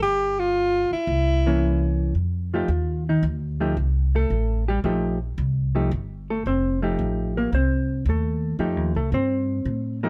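A dry, close-up recording catches a short slice of small-group swing and bop at 112 BPM in F mixolydian, tuned to A4 = 445 Hz, with a warm swinging feel. A breathy, subtoned alto saxophone plays a clear melody with light vibrato and a touch of plate reverb, ending at 2.0 seconds, while a thumpy, woody pizzicato upright bass runs throughout. A dark, clean hollow-body electric guitar enters at 1.5 seconds and comps through the C7b9 to F9 changes.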